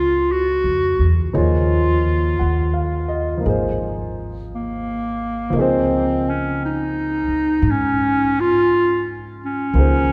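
A forceful, punchy clarinet with light vibrato sings a tender, romantic swung jazz ballad melody up front from the first moment, over natural, woody upright piano chords and a dark, growly pizzicato upright bass, set in the long, wet reverb of a church or concert hall in this brief section cut from a longer piece.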